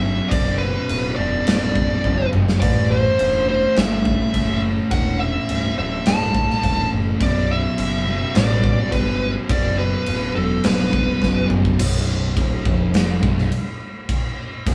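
A straight 4/4 pulse drives this brooding, ominous stoner and doom metal passage, with a big acoustic drum kit up front, its punchy kick, bright cymbals, medium-tuned snare and toms breaking into fills around 2.0 and 11.2 seconds. A double-tracked fuzz guitar grinds out a low riff over a round, growling overdriven bass as the chords shift between Bm and Am, while a compressed, distorted fuzz lead guitar carries the melody up front until 11.5 seconds. The band sounds as if playing live together in a small room with light reverb, and the passage is cut from a longer piece.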